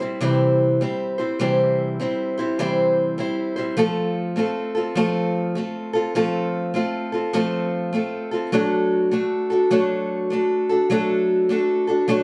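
Country guitar piece at 101 BPM in 4/4 with a swung eighth-note lilt, sunny and nostalgic in mood. A single picked, old ladder-braced acoustic guitar carries it solo across the short 12.2-second cut, its dark, woody, boxy tone and old strings giving a worn character as it moves through C, F and D/F#. The guitar sits up front yet is heard from further back in a moderately reverberant studio room.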